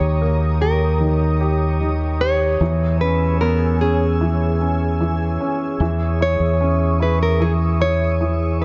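A round, punchy fingered electric bass sits up front in this heartbroken, melancholic pop ballad at 75 BPM, under a fingerpicked classical nylon-string guitar melody with tape echo and audible finger squeak, a clear, polished baby grand piano accompaniment, and a glassy, ethereal FM pad holding sustained chords with ensemble chorus and its own reverb, all moving through D#7, E6 and C#madd9/E in a short excerpt set in a small, lightly reverberant room.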